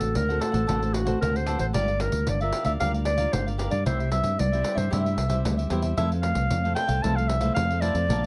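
A clear clarinet leads this lively, sunny samba and choro passage in F major at 113 BPM, playing a jazz-style solo with light vibrato up front, while a growly, bright fingered electric bass sits equally forward. A fingerpicked classical nylon-string guitar with fresh strings stays in the background, a crisp, picked cavaquinho joins at 0.3 s, and a jingly pandeiro played with soft hands adds small-room color over a D7, Gm7, C, Fmaj7 progression. Light reverb and close, detailed microphones frame this short section cut from a longer piece.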